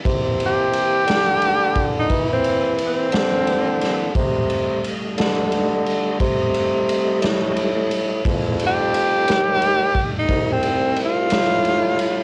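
Laid-back and rollicking, this slow blues excerpt moves in a straight 12/8 at 59 BPM, with a breathy, scooped tenor saxophone carrying the melody up front in a jazz style from 0.5 seconds, while a mellow bassoon with light vibrato holds down the bass line. A reedy tonewheel organ with key click, chorus vibrato and a slow rotary speaker sustains chords over a move from C7 to F7 at 4.2 seconds, and a gritty, saturated garage drum kit of kick, snare and ride sits up front with a rolled-off top. The home cassette recording carries light reverb, and the whole fragment is cut from a longer piece.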